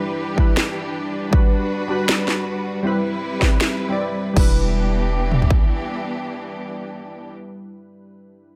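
Future bass in E minor at 158 BPM with a half-time, lightly swung feel, this emotional, dreamy excerpt from a longer piece opens with glassy, detuned digital keys and a lush, distant bowed string section pumping under sidechain, the keys shimmering with chorus and delay over Em7, Gmaj7 and Cmaj7 chords. A punchy, layered big-room kick and toms sit up front alongside a trap kit with a sharp snare, finger snaps and crash, while a deep, boomy 808-style bass lands on E1 at 4.4 s as the chords return to Em7. Light reverb and digital ambience frame the mix, and the keys ring on alone until 8.6 s.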